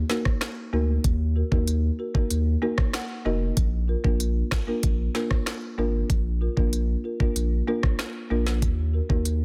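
Tough and bouncy, this short dancehall excerpt moves at 95 BPM in Eb harmonic minor, shifting from Ebm to Bb and back to Ebm at 8.6 seconds. A deep, thick saturated sub bass and an afro-pop drum kit with a knocking kick, woody snare softly clipped and smooth hats sit up front, while a dry, rustic folk marimba played with soft mallets pumps against the sidechain and adds a fill from 2.6 to 3.6 seconds. The sound is a dense, heavily limited modern master set in digital ambience.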